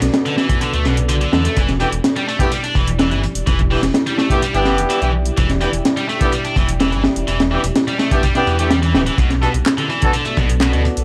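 Gritty and raw, this brief breakbeat cut from a longer piece moves at 126 BPM in a straight 4/4, sitting in E minor and settling mostly on an Em7 chord after opening on Bm7. A crunchy acoustic breakbeat kit sits up front with a punchy kick, a high-tuned snare and saturated, rolled-off hi-hats, while a quieter electronic house kit layers tape-warm handclaps and hats beneath it. A dark detuned saw bass rumbles low with a beating, sustained tone, and a deep, moody ambient pad holds evolving chords with chorus, reverb and sidechain pumping. From 0.3 seconds a bright, double-tracked high-gain guitar plays a distorted riff through tube saturation and tape echo, and from 1.8 seconds a clear, tight horn section adds pop-style stabs, also touched by tape echo. The whole recording has a dry, cassette-tape grit with only light reverb.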